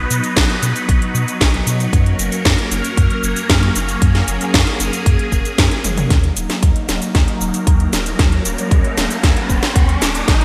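Bright, 1980s-style digital production in a lush hall reverb frames this bittersweet, nostalgic italo disco cut at 115 BPM, which moves from B to F# and then shifts to D#m as a new section opens at 6.1 s. A swirling, vintage string machine with phaser and ensemble chorus holds sustained chords over a round, deep analog bass with a filter sweep. A punchy electronic kick and an up-front house kit of cracking snare, metallic hats, cabasa and toms in gated reverb drive the straight 4/4 groove, a drum fill at 5.8 s leads into the second section, and an electronic riser enters at 7.5 s.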